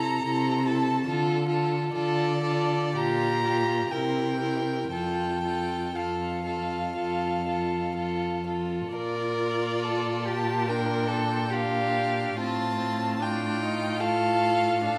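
A flexible, rubato pulse in four gives this slow, romantic string quartet movement a lyrical, tender character from its first bar, as if lifted from a longer work. The first violin carries the melody high above the ensemble with smooth, even, vibrato-laden bowing that sounds slightly distant. Close beneath it, the second violin's clear second line and the viola's accompaniment share the same even bowing and vibrato. The cello sits up front with a rich, expressive bass, its soft attacks and portamento slides adding warmth to the lower register. A reverberant recital hall surrounds the four players, and the harmony settles into a new centre at 8.9 s before the passage is cut off at 15.0 s.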